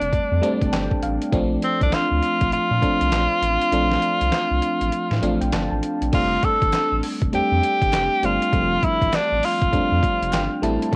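R&B in a new jack swing vein, upbeat and flirty, with a swung 16th feel and a homemade cassette sound carrying little reverb. A bright, punchy tenor saxophone leads up front in a jazz style with vibrato, over glassy, chorused FM electric piano fills, a round, deep analog bass and a gritty, pitched-down sampler-style drum kit whose kick drops out from 3.7 to 6.1 seconds. A very quiet, hollow group handclap joins at 6.7 seconds.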